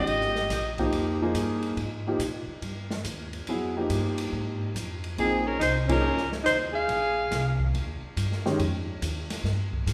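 Cool and hypnotic, this modal jazz fragment, cut from a longer piece, sways in a swung 4/4 over an Fm11 chord. A clear soprano saxophone carries the melody up front with vintage vibrato and scooped notes, while a breathy alto saxophone plays a lower second line. After a brief opening phrase, the two horns return at 5.2 s as the harmony moves to Bbm11, and the band hits an accent at 5.8 s. A natural-sounding concert grand piano with deep bass holds the accompaniment until 8.6 s. Beneath it, a woody pizzicato upright bass on steel strings and an acoustic kit, with dark cymbals, a boomy kick, a medium-tuned snare and a rolled-off top, sit back in the reverberant space of a church or concert hall.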